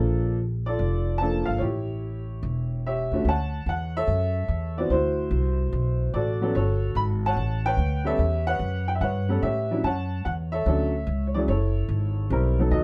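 A boxy upright piano with long sustain carries the melody over a thumpy, dark pizzicato upright bass on gut strings from the first moment of this sophisticated, warm jazz piano trio excerpt, swinging in 4/4 at 146 BPM and moving from Bbmaj7 and A7 into D major at 3.3 s through chords such as Gmaj9#11 and A9, with both instruments up front in light reverb.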